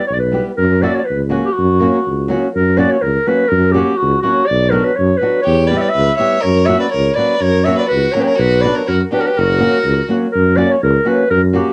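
A mellow, distant clarinet carries the melody in this restless, fiery Balkan folk excerpt, its roomy, classical tone sitting up front and colored by cassette tape. Beneath it, a solo tuba with a smooth top holds the bass in a similar classical style, while a boxy, thumb-plucked nylon-string guitar with a small acoustic body supplies the accompaniment. At 5.4 seconds a clear, close violin enters as a second line, one bowed player with smooth, even vibrato, and it stops at 10.1 seconds. The music moves at 123 BPM in 2/4 with a swung sixteenth-note feel in F# Phrygian dominant, circling through Em, F# and Bm. A modest small-room reverb and the home cassette recording lend the whole a lived-in sound, and the passage is cut from a longer piece.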